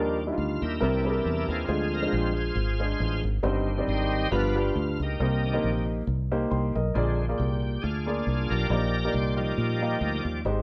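Heard as a band playing live in one room with a moderate studio reverb, this brief slice of uptempo gospel carries a solemn, soulful mood over a lightly swung 4/4. The tonewheel organ takes the solo from start to finish, its bright, full, shouting tone lightly overdriven, with audible key click, chorus vibrato and a slow rotary speaker as it holds sustained chords up front. Beneath it, an upright piano supplies accompaniment with a woody, intimate character and audible action noise. A fingered electric bass anchors the low end with a punchy, foam-muted, direct sound. The harmony moves from Ebmaj7 through Dm7b5, Cm/G and G7 to Cm7 and Bb7, settling on Ebmaj7/Bb near 8.7 seconds before the cut at 10.6 seconds.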